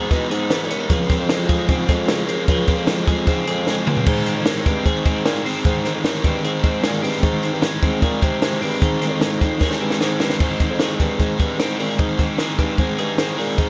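Youthful and bright, this jangly indie pop piece at 152 BPM in Ab major pairs a crunchy, picked overdriven guitar up front with twangy, compressed twelve-string electric arpeggios shimmering through harmonic tremolo and slapback echo, while a mellow, distant bassoon with light vibrato carries the bass line and a compact, dry cocktail kit with punchy kick, high-tuned snare and dark cymbals drives the groove throughout, adding fills at 3.7 and 9.6 seconds, the whole mix set in a big arena-like concert hall reverb.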